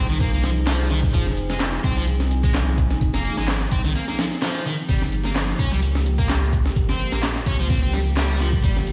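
Breakbeat with a raw, funky feel, this short cut from a longer piece rides a swung sixteenth-note groove in 4/4. A sampler-style break kit carries the beat with a thumpy kick, a high-tuned snare and hi-hat, its sound compressed, pitched up and gritty. Behind it sits a punchy analog drum machine adding handclaps and hi-hat, re-recorded in a large room and set further back. A deep, saturated sub bass sits up front with a fast attack, while a bright, double-tracked distorted guitar plays a picked riff through digital delay. Underneath, a warbling, nostalgic sawtooth pad holds slow-attack chords with chorus and sidechain pumping, moving from Fm7 to Gm7b5 at 4.9 seconds. The whole mix sounds as if played on a big sound system in a bare stone room, with vinyl crackle adding a lo-fi patina.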